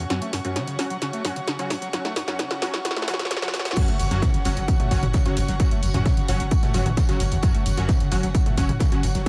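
Tape-warm and punchy in a small room, this dark, relentless slice of driving peak-time techno opens with a squelchy, resonant acid line, floating bowed strings, bright detuned rave stabs under filter sweeps and an analog drum-machine fill building up until the drop at 3.8 seconds, when a heavy, up-front kick, a background tambourine and fat snare, and a growling, buzzy 808-style bass join in.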